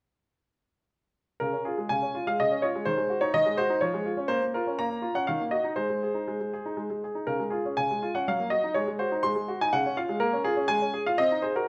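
Playful and cheerful, this short excerpt of a classical-period piano sonatina in Db major moves in a flexible, rubato 3/4 at 123 BPM, with a clear, present grand piano playing solo and up front from 1.4 to 11.7 seconds across a range from Db3 to C6, its harmony turning through Bbm, Ebm and Ab before settling toward Db and closing on Ab7/C, all set in a moderate recital hall reverb.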